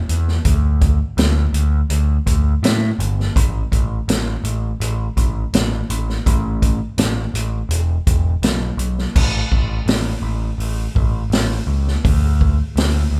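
With light reverb and the sense of a band playing live in one room, this swaggering, raunchy fragment of blues rock power trio and southern rock moves at 83 BPM in a straight 4/4, pairing an up-front, amped, overdriven picked electric bass with a round tone and a range from E1 to A2 against a natural-sounding vintage acoustic drum kit with a punchy kick, medium-tuned snare, hi-hat, crash cymbal and a rolled-off top, both parts entering at 0.1 seconds, the drums stopping at 12.9 seconds and the bass at 13.2 seconds.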